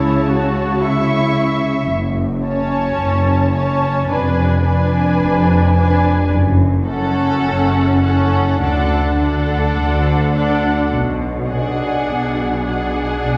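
Classical slow romantic movement for muted string orchestra in F# minor at 48-56 BPM, solemn and elegiac with a rubato feel, where veiled con sordino violins carry a high melody over a second violin line, a warm viola accompaniment, a lush cello bass with soft attack and a dark, up-front double bass, all sections bowed with vibrato and set back in a wet recital hall reverb across this 13.4-second excerpt cut from a longer piece.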